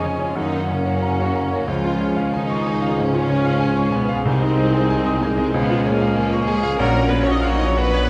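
An intimate, up-front baby grand piano with audible action noise carries the melody in this passionate, lush classical excerpt in F# major at a rubato 88-98 BPM, shadowed by a bowed violin section in the background while a second, distant and very quiet violin section, a pure-toned concert flute and a warm, distant clarinet add second lines, a dark bassoon and a focused viola section accompany, very quiet mellow French horns and vintage-tinged trombones hold sustained chords, and rich double basses, expressive portamento cellos and a distant tuba anchor the bass, all within a moderate scoring-stage reverb, with the flute, clarinet and bassoon falling away around 7.0 seconds.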